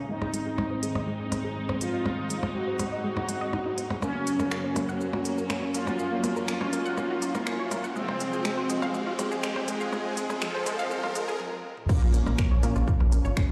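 Dark and cinematic, this melodic techno build-up opens with clear, bowed symphonic strings holding sustained chords, a lush detuned unison pluck spinning arpeggios, and a bold, brassy analog pad firing stabs, all pumping under sidechain while filter sweeps move through the pluck and pad. A round, mellow synth brass carries the melody with chorus and vibrato over a techno kit of smooth hats, finger snaps, shaker, toms, percussion blips and crash, as a background riser climbs from 4.2 seconds into a short break and drum fill. At 11.9 seconds the drop hits with a heavy, up-front kick, joined a moment later by a punchy, funky plucked analog bass, all bathed in a lush hall reverb with a slightly lossy, roomy sheen.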